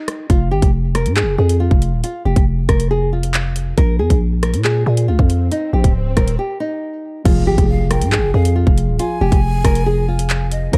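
Drill hip hop in F minor at 138 BPM with a half-time feel, this cold, menacing excerpt opens on a small, boxy fingerpicked nylon-string guitar melody, joined almost at once by an up-front electronic drum kit with a hard-clipped kick, metallic hi-hats, handclaps, rim clicks and crash, and a growling, buzzy 808-style bass with a fast attack and decaying tail. Breaks at 0.0 and 6.4 seconds frame a very quiet electronic swell that lands on an impact at 7.3 seconds, where the harmony settles on Fmadd9 and muted, felt-like synth keys with chorus sit dark in the background. A breathy, expressive jazz flute with lifted highs and delay enters as a second line at 7.7 seconds, all within a dark, digital ambience.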